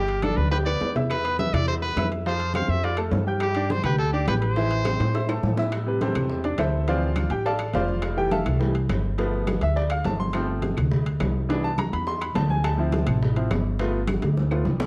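Through a light reverb and the worn, warbling pitch drift of old cassette tape comes a joyful, sunny salsa fragment at 208 BPM, where a brilliant, punchy trumpet with light vibrato and scooped notes carries the melody up front until 5.4 seconds, a present grand piano with short sustain takes a solo from 5.7 seconds over chords moving through Am7, Fmaj7, G9sus4 and Cmaj7, a thumpy gut-string upright bass sits close, and soft-handed congas, tight high-tuned bongos, ringing metal timbales and very quiet woody claves fill the background with drum fills near 0.4, 4.9 and 14.1 seconds.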